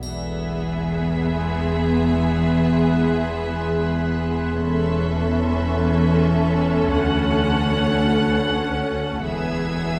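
In a slow, straight 4/4, this mysterious, uneasy suspense film cue from a longer piece sets a clear, intense violin melody over a lush second violin line, expressive violas with portamento, a close, even high violin texture, and bowed cellos and double basses, while a mellow, evolving analog drone and a deep, moody pad with chorus sit beneath, a dark-toned triangle sounds only until 2.3 seconds, and the chords move from E through A/E and Dmaj7 back to E, all heard from further back in a wet stone room.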